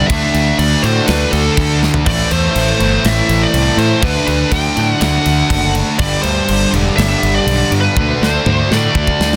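A dark, high-gain lead guitar with distortion and delay sings an epic melody over a trio of riffing guitars (a bright, double-tracked fuzz part, a high-gain part and a very quiet, sludgy overdriven one), with a hushed, intimate chamber string section holding sustained chords beneath. An up-front, growly fuzz bass and a tight, polished metal drum kit with bright cymbals join at 0.1 seconds, driving a half-time heavy metal feel at 122 BPM through a D, Am, D, G5 and D progression, with drum fills at 1.8 and from 8.0 seconds. Light reverb and a dense, heavily limited modern master make this brief cut from a longer piece sound massive and brooding.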